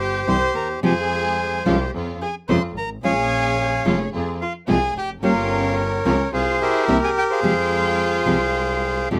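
A reedy, close-miked bandoneon carries the melody over a dark, bowed violin second line with portamento and a smooth bowed double bass at the outset, joined at 0.3 seconds by an up-front, fingerpicked nylon-string guitar with audible finger squeak and at 0.8 seconds by distant, lush symphonic string stabs, in this melancholic, dramatic rubato tango at 108 BPM in F harmonic minor, tuned to A4 = 435 Hz and heard as a rough home demo with light reverb, cut from a longer piece.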